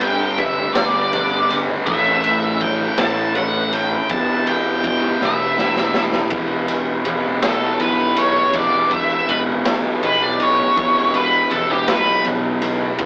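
A rough rehearsal-room recording with tube saturation, a small-room ambience and an AM-radio murk frames this trippy, dark psychedelic rock excerpt in E dorian, moving at 54 BPM in a straight 6/8 over G, Aadd9 and Em chords, where an up-front, dark octave-fuzz lead guitar soaked in wah and distortion carries the melody and takes a solo from 6.3 seconds, a double-tracked fuzz guitar with phaser churns a riff in the background, an overdriven fuzz picked electric bass growls below, a mellow vintage combo organ holds clean sustained chords with light vibrato, a gritty garage drum kit with boomy kick, medium-tuned snare, ride cymbal and a pumping room plays a fill at 5.2 seconds, and very quiet, low-tuned, ringing congas played with soft hands join at 0.2 seconds.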